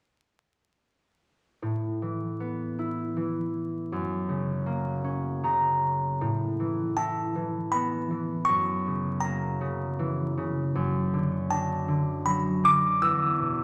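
Innocent and sleepy, this short excerpt of a children's lullaby sways gently in three-four time with a loose, rubato feel. A concert harp opens the piece at 1.6 s, its bright, thumb-plucked strings ringing close and up front as it carries the accompaniment across a broad range, and it adds a brief fill at 5.0 s. At 7.0 s a delicate music box takes up the melody high above, its tinkling, plucked tones sounding like a small box and slightly out of tune, sitting just as close to the listener. The harmony drifts from Asus2 to F#, returns to Asus2, and then moves through F#7 and a rootless Bm7/F# before settling on E5. A wet, large studio reverb surrounds the sound, and a bed of vinyl crackle lends it a faded, old-record quality.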